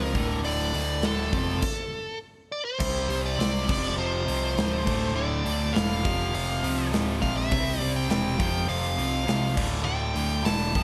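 Heavy and menacing, this hard rock excerpt in D minor drives along at 102 BPM in a straight 4/4, cut from a longer piece. A dark, smooth lead guitar with overdrive and slapback echo sits up front carrying the melody between A4 and A5, while a cranked, double-tracked stack guitar, bright and overdriven, pounds out the riff between D2 and C4. Underneath, an overdriven picked electric bass adds a growly, punchy weight down to D1. A big acoustic rock kit enters at 0.1 seconds with a punchy kick, medium-tuned snare, hi-hat and bright crash cymbals ringing in a large room. A stop from 1.6 to 2.8 seconds breaks the momentum before the section comes back around, with chords built on D, F and C. The sound carries a small-room ambience and some lossy compression artefacts.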